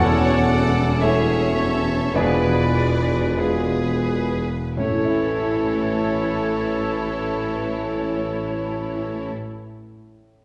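Classical orchestral music, lyrical and passionate in a rubato 4/4, slowing through its opening as a rich violin section and a warm baby grand piano carry the melody, the piano sounding open and set in the background. A bright oboe, a clear, lush second violin section, a mellow, distant clarinet and a pure, very quiet small flute group weave second lines over a soft bassoon, a smooth viola section, sustained chords from a vintage-toned French horn section, punchy trumpet stabs, and a bass of focused cellos, expressive double basses and a very quiet tuba. Round, soft-mallet timpani enter at 4.8 seconds as the harmony settles home, and the whole passage sits back in a wet recital hall.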